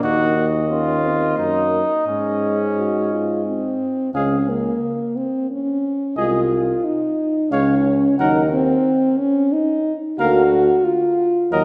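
Warm and triumphant, this classical brass quintet excerpt moves in a steady 3/4 at 89 BPM, with a breathy cornet carrying the high melody over a mellow trumpet second line, an up-front French horn with vibrato, a distant euphonium in the background and a clear, roomy tuba on the bass, all set in a wet concert hall reverb as the harmony passes from Ebm/Gb through Absus4 and Ab to Db and a closing Bb/D at 10.2 seconds.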